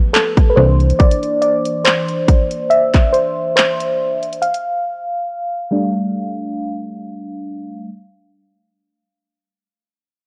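Dreamy and smooth, this short slice of contemporary R&B rests on a soft, round FM electric piano that carries a solo across the whole passage, its tone dark and warbling through chorus, phaser and a filter sweep, with a faint noise layer adding vintage character. A barely audible electronic downlifter slips in at the start, while a trap drum kit of handclaps, bright hi-hats and a hard-clipped kick sits up front with overdrive and gritty 12-bit sampler texture, dropping out at 4.7 seconds. A snappy, metallic slap-like FM bass lands one brief note around 0.6 seconds. The harmony moves from G7 to C7 and settles on F6 at 4.4 seconds, under a lightly swung sixteenth-note feel. The sound is dry and close, with a gritty hardware and cassette-tape character that gives the fragment a lo-fi intimacy.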